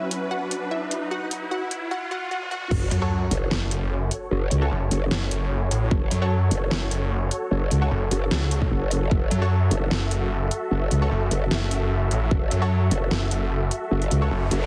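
Heavy wobble dubstep in F# minor at 150 BPM with a half-time feel, this chaotic, menacing excerpt opens on a short build-up where a bright, detuned unison pluck carries the melody through dub echo while huge supersaw chords pump under a low-pass filter and a riser with a filter sweep climbs beneath them. A drum fill leads into the drop at 2.7 seconds, marked by an electronic impact and a punchy, overdriven kick, as the pluck falls away and the harmony settles on F# minor. From there a growling, wobbling bass with formant-filtered saturation and chorus sits up front alongside a snarling, detuned saw bass whose moving notch and distortion add grit. The overdriven dubstep kit drives the section with a deep snare, metallic hats, toms and crash, while a nasal, orchestra-hit-like synth stab flickers in the background through its own reverb and dub echo. A noise sweep closes the passage at 14.3 seconds, and the whole mix carries a heavily compressed, radio-like sound in a light digital ambience.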